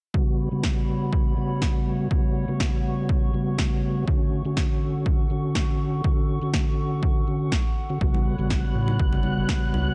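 Soulful deep house at 122 BPM with a light 16th-note swing, moving from A13 to Dmaj7 and back in this short excerpt, the mellow, flute-like tonewheel organ stabs sit up front with key click, chorus vibrato, a stopped rotary speaker, analog delay and a filter sweep running throughout, over a warbling, nostalgic tape-like pad and a punchy electronic kick and snare. Near the end, at 8.0 seconds, a round, deep analog bass arrives, joined by very quiet, ringing congas played with hard hands and a silky string machine with phaser and ensemble chorus. The pad, organ and bass all carry sidechain pumping. The whole piece carries a lo-fi cassette tape character with its top end rolled off, set in a digital ambience.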